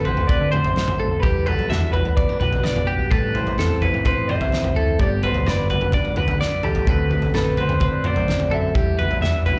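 This sounds like a live gig heard through the venue's PA, with club reverb hanging around the band in a short cut from a longer piece of bright, intricate math rock and midwest emo in a straight 4/4. A dark, slightly broken-up electric guitar through a small old amp carries the melody, its picked, compressed tone wrapped in spring reverb, slapback echo and tape echo. Beside it, a twelve-string electric guitar spins clean, twangy arpeggios with a sparkling, compressed edge and its own slapback and tape echo, while a mellow electric guitar fingers a dark, clean accompaniment underneath through D7, Em9, Am7 and Gmaj7 changes. A growling picked electric bass, overdriven and sitting in the background, anchors the low end. The loose indie drum kit enters at 0.1 seconds, up front with a punchy kick, fat snare and toms in a pumping room, and throws in a fill from 6.4 to 6.9 seconds.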